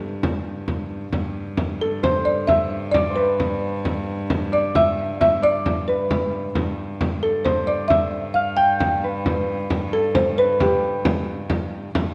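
A folk marimba played with soft mallets opens the piece, carrying the melody in a woody, mellow voice touched by tape echo, over a low drone from a single bowed viola da gamba with a reedy gut-string tone and light vibrato. This short medieval dance in a straight 6/8 feels ancient and festive. A deep, large frame drum joins at 0.2 seconds, sitting up front in a small-room sound. At 1.8 seconds a fingerpicked concert harp adds a ringing second line in the same register as the marimba. The whole ensemble sits in a moderate scoring-stage reverb, and the passage is cut from a longer piece, ending around 12.1 seconds.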